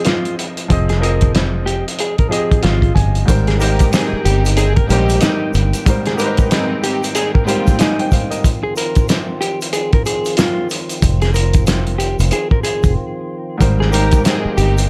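Boom-bap hip-hop with a nostalgic yet confident mood, this clip is cut from a longer piece and swings its sixteenths in a steady 4/4. A cloth-damped drum kit sits up front, thuddy and muffled with a fat snare, tight kick and gritty, saturated grit, while a fingered electric bass, round and dark, joins at 0.7 s. A slightly broken-up electric guitar carries the melody in a compressed, dark tone over a baby grand piano whose natural, cassette-tinged chords drop out at 8.5 s as a break arrives. From 3.3 s a percussive tonewheel organ with slow rotary swirl and light overdrive holds sustained chords in the background, joined by a grainy, distant egg shaker. Lush bowed strings with smooth vibrato add stabs through the middle and return near the close, all bathed in a light reverb.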